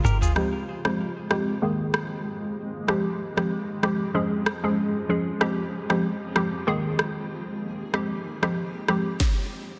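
A hollow, bouncy square-wave pluck sits up front in this afrobeats cut, its detuned, chorused tone carrying a sub octave and a noise layer, entering at 0.4 seconds to play a mellow accompaniment of fast-attack, decaying notes through a low-pass filter. Beneath it, a granular cloud pad holds sustained chords from the start, its blurred, evolving sine texture softened by built-in reverb and its own low-pass filter. An electronic afro-pop drum kit opens with a short fill before settling in at 95 BPM with a 16th-note swing, bringing a deep kick, rim clicks, shaker, toms and a sharp, softly clipped snare. The harmony in F minor circles through Fmadd9, Ebsus4 and Db, while a filter sweep runs across the section from 0.4 seconds. The mood is hypnotic and mellow, set in a moderate plate reverb with a dense, heavily limited modern master, and the passage is cut from a longer piece.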